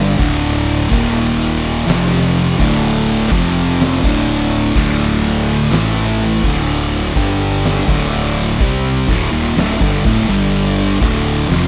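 A dry recording opens this brooding, sludgy stretch of stoner and doom metal, cut from a longer piece, where an up-front, double-tracked fuzz guitar grinds out a picked riff over D5, Eb5 and D minor. Beneath it a fingered electric bass adds overdriven, fuzzy weight, and from 0.2 seconds an oversized, low-tuned acoustic kit pounds away in a bright stone room, its fat snare, punchy kick and dark cymbals saturated and gritty. A drum fill arrives at 11.5 seconds, just before the cut.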